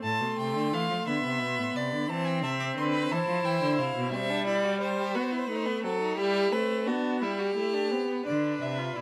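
In a straight 6/8 lilt at 58 dotted-quarter beats per minute, this lively, elegant baroque-style fugue in A minor, tuned to A4 = 445 Hz, sets a full-toned first violin singing the melody with focused vibrato above a clear, up-front second violin line and an expressive viola accompaniment marked by portamento, while the bowed cello anchors the bass until 4.1 seconds and returns at 8.3 seconds, all in a light reverb.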